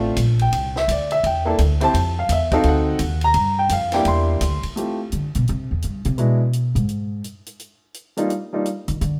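Grand piano and upright bass open this brief jazz piano trio passage together, with the piano taking a solo over a sophisticated, relaxed swing at 170 BPM in F major, tuned to A4 = 438 Hz. The piano sits up front with a smooth, vintage tone, moving through rich harmony such as Bbmaj9, Fmaj7, D7b9 and C9. At 4.8 seconds the upright bass takes over the solo, its plucked steel strings sounding woody and dark and sitting close to the listener. The compact cocktail drum kit, sitting lower in the mix, plays hi-hat, kick, snare and ride in a dry, natural way, with dark cymbals, a high-tuned snare and a tight kick. The trio plays live in one stone room with a moderate reverb, giving the sound a gentle sense of space.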